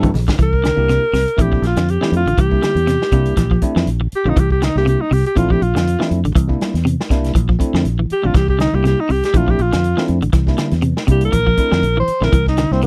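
Afrobeat with a joyful, driving, swung feel, where a breathy alto saxophone with vibrato and scooped notes takes an up-front jazz-style solo from 0.4 seconds over a punchy vintage drum kit, a round fingered electric bass, twangy clean guitar arpeggios and a bell-like tine electric piano with subtle chorus, all alternating between C7 and Bbmaj9#11 in a dry, close 1970s-style studio sound.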